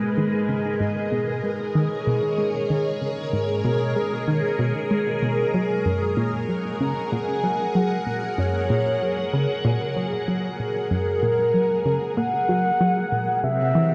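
Ambient music with a cosmic, mysterious mood, cut from a longer piece and bathed in a huge reverb with worn, warbling cassette-tape pitch drift. A lush, vintage string machine holds sustained full-ensemble chords through phaser, ensemble chorus and shimmer reverb, while a tight, driving sequenced synth riff with a detuned sawtooth pluck runs beneath it, its filter sweeping throughout. At 6.8 s a round, horn-like synth lead enters with a mellow melody colored by vibrato, chorus, delay and tape character, over harmony moving from G#madd9 to F#add9 and touching C7 at the close.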